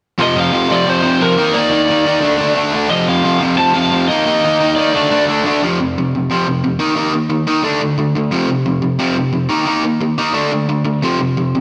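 Punk with an upbeat, rebellious energy, this short cut from a longer piece is built entirely from overdriven electric guitars driving a straight, fast pulse. An up-front semi-hollow guitar, bright and hollow-bodied, picks a power-chord riff through the whole passage, joined in the first half by a crunchy, overdriven companion playing a riff in the same low-to-mid range. Over them, a lead guitar through a small cranked amp adds a warm, picked melody in a higher register, its overdrive tinged with slapback echo. At 5.6 seconds the second section begins and the texture thins to the semi-hollow guitar alone, cycling through the same F5, Eb5 and D5 power chords until 11.6 seconds. A lush hall reverb gives the whole thing a big arena sound.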